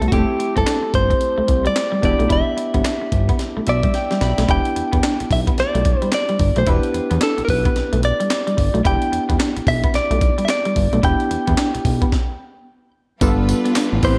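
A swung 16th-note groove at 110 BPM in 4/4 drives this punchy, slick new jack swing excerpt, built on a gritty, compressed breakbeat kit with a thumpy kick, snare, hi-hat, handclaps and tambourine, a drum fill at 3.9 seconds, and a fat, detuned analog bass with filter sweeps under Fmaj9 and Em7 chords. An up-front, clean direct-recorded electric guitar carries the melody over evolving analog keys with chorus, which add a fill near 3.4 seconds, while a twangy guitar at the edge of break-up plays a riff. After a stop at 12.1 seconds, a bright, bowed string section enters at 13.2 seconds on a G7 chord, all within a dark production with light reverb.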